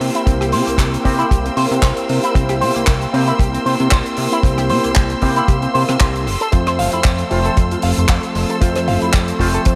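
Nu-disco with a sunny, feel-good lilt, built on a tight, dry kick up front and a damped 70s drum kit of handclaps, hi-hat and rim click, a fat, detuned analog bass, a barky, overdriven tine electric piano pumping through phaser and ambient delay, a twangy envelope-filtered guitar riff with subtle chorus, and distant, lush bowed strings with vibrato and portamento that also pump, the mix soaked in dreamy hall reverb as the harmony shifts from C7 to Fmaj7 at 6.3 seconds.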